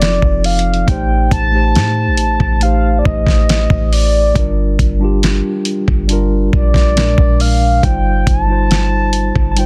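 A slow, straight 4/4 groove at 69 BPM is set by a dusty, sampler-style drum kit of hi-hat, thumpy kick and fat snare, compressed, gritty and up front in the mix. Under it, a clean 808-style bass supplies deep, boomy sine tones with a fast attack that decays into a dark low end. A mellow tine electric piano carries the chords through built-in speakers, moving from F7 and Am7b5 to Gm7, then Bb7 and Eb6/G. Above them, a horn-like synth lead sings the melody with a round, full-bodied sawtooth voice, soft attack and sustained notes, its vintage warble coloured by vibrato, a filter sweep, chorus and digital delay. The result is sensual, longing contemporary R&B in a 9.7-second cut from a longer piece, with little reverb and a dense, heavily limited modern master.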